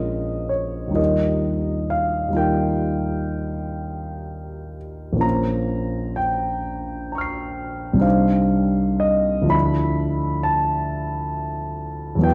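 A concert grand piano, intimate and up front with audible action noise, deep bass and long sustain, plays alone across this hazy, serene impressionist classical fragment in a rubato 9/8 at 39-46 BPM, tuned to A4 = 437 Hz, drifting through chords from Bbm7 and Ebadd9 to Cmadd9 and Dmadd9 within a moderate concert hall reverb.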